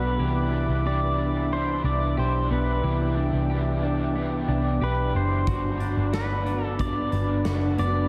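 A bright, twangy pedal steel guitar with volume swells and digital delay carries the melody in this floating, blissful dream pop fragment, set over a Cmaj9 chord with arpeggios from a clean, compressed electric guitar, an overdriven lo-fi garage guitar shimmering with harmonic tremolo and chorus, a smooth, warbling analog pad, and a dark, round, foam-muted picked bass up front, all inside a lush hall reverb, with a big-room arena drum kit and its punchy kick entering at 5.5 seconds.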